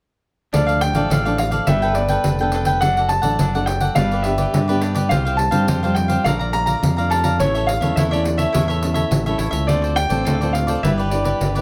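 A moderate studio reverb gives this short cut from a longer samba and choro piece a polished, roomy sheen, and its yearning, nostalgic mood comes through from the first chord at 0.5 seconds. A clear concert grand piano carries the melody in its upper register, its natural tone sustaining long over the ensemble. Beneath it, a crisp, picked cavaquinho and a dark, thumb-plucked classical nylon-string guitar fill in the harmony. A bright, fingered electric bass sits direct and up front, matching the piano in level, while a jingly pandeiro played with soft hands adds a small-room shimmer. The harmony drifts from D minor through G-based colours and a Bbmaj7 to an A chord, then settles on Dm7 and G6 as the whole band plays together until 11.6 seconds.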